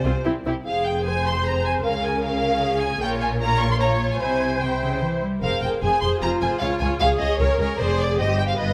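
Rich, vibrato-laden first violins carry the stormy melody up front in this quick, dramatic classical-period movement for string orchestra in 3/4 at 152 BPM in F minor, supported by a clear second violin line, lush close violas, smooth-topped cellos and focused double basses, all bowed through harmony that cycles from F minor through D-flat, B-flat minor and C, with moderate scoring-stage reverb, in an excerpt cut from a longer piece.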